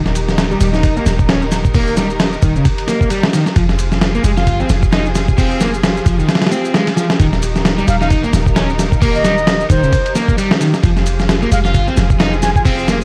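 Gritty, swaggering breakbeat at 132 BPM with a swung 16th feel, cut from a longer piece, where a dusty, compressed sampler-style drum kit with a thumpy kick sits up front in studio reverb over a deep, boomy 808-style bass with tube saturation, a background shaker, an overdriven semi-hollow guitar riff under a filter sweep from 0.5 seconds, distant lush strings pumping with sidechain on Eb and Fmadd9 chords, and a reedy wooden flute melody with dub echo and 12-bit sampler grit arriving at 7.9 seconds, all wrapped in vinyl crackle.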